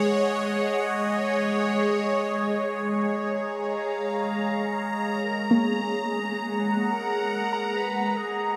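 This reflective, melancholic ambient passage in free time, taken from a longer piece, opens with a bright, morphing wavetable pad sitting up front, holding sustained chords that move from G#7sus4 to A#m7/G# under a shimmering phaser and its own reverb. The pad's detuned unison voices give it a slow-blooming, evolving shimmer as it carries the whole span. At 5.2 seconds the harmony settles onto G#sus2 and a clear, classical-style clarinet fades in from the background with a short, narrow melody. Just after, at 5.5 seconds, a soft, round pluck joins with dark arpeggios in the background, its chorus, gritty 12-bit sampler texture and diffuse ambient delay adding a hazy, lo-fi edge. A long cathedral reverb bathes the recording, letting the layers hang in a vast, wet space.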